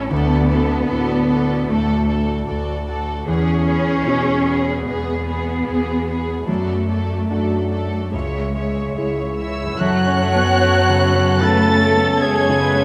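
Rubato and unhurried in 4/4, this moving, longing cinematic film-score excerpt sets a veiled, con sordino violin section's high melody over a second muted violin line, background violas, an intimate grand piano with audible action noise, ringing fingerpicked harp arpeggios, and dark bowed cellos and double basses, before a clear solo clarinet and an airy flute group join at 9.4 s and a mellow, very quiet French horn section adds sustained chords at 9.8 s, within a wet scoring-stage reverb.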